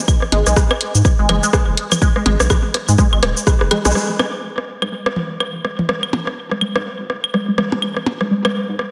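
Clinical and quirky, this minimal techno excerpt at 124 BPM in G# minor swings its 16ths around a punchy, up-front electronic kick that stops at 3.6 seconds and a house kit of bright, filtered hats, crash, rim click and shaker that drops out after a fill and band accent near 3.8 seconds, leaving a tape-tinged click kit of claves, blips, rim and toms with analog delay, a squelchy, resonant blip pluck riff on G#3 drenched in phaser, chorus and delay, and a round, dark, saturated analog bass pumping beneath, all bathed in a dreamy, lush hall reverb.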